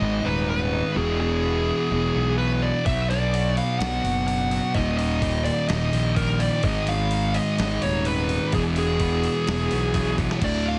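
A thick, fuzzed-out guitar riff sits up front in this angsty, dark alternative rock excerpt at 127 BPM, joined by a dark, smooth overdriven lead melody, a round, fuzzy fingered bass and a very quiet, twangy twelve-string electric guitar picking bright, clean arpeggios over chords moving from G#m through E, Bm and Eb. A gritty, sampler-style drum kit with a thumpy kick enters at 2.9 seconds in a half-time feel and closes with a fill at 10.0 seconds. The sound is dry and heavily compressed, with a radio-like quality.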